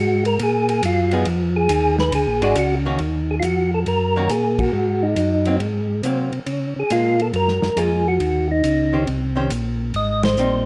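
A round, mellow percussive tonewheel organ carries the melody through slow rotary speaker in this smoky, soulful Eb minor soul jazz organ trio at a swung 138 BPM, with a tonewheel organ solo in the first 3.0 seconds, a smooth vibrato-laden tonewheel organ bass line, a dark, dry soul drum kit with a tight kick and dark cymbals, and a clean, hollow-body archtop guitar comping, all in a large studio reverb and punctuated by band accents at 4.5 and 10.2 seconds.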